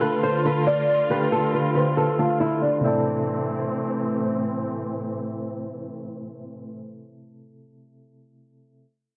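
A dense, heavily limited modern mix sits in a moderate plate reverb, giving this melancholic hip hop fragment a polished, enclosed sheen. A fingerpicked nylon-string guitar carries the melody up front, small and acoustic behind a low-pass filter, and it falls away at 4.1 seconds. Soft electric-piano-like synth keys supply the accompaniment with round, mellow tones that have a fast attack and decay, shimmering through chorus and tremolo until 8.8 seconds. Alongside them, a dark symphonic string section holds lush, bowed chords with vibrato, a woody body and a smooth top, sustaining until 6.7 seconds. The half-time feel, a filter sweep over the opening 2.8 seconds and the harmony's move from D minor to A minor lend this cut-off passage a brooding, shadowed weight.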